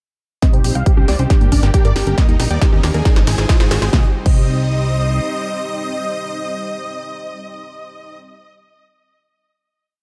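Euphoric, emotional uplifting trance at 137 BPM in C minor, where a huge, airy supersaw lead with delay carries a repeating riff over a pedal note, a phaser-treated supersaw swell holds sustained chords, a lush background pluck arpeggiates, a fat, saturated analog bass rolls in sixteenths, and a punchy up-front four-on-the-floor kick joins an overdriven analog drum machine with congas, hi-hats, snare and crash through a build-up with a drum fill, a filter sweep on the supersaw and a very quiet riser from 2.5 s. A final Cm chord arrives at 3.9 s, after which the pluck and drums drop out at 4.4 s and the bass at 5.2 s, leaving the lead and swell to ring on in a dark, lightly reverberant mix.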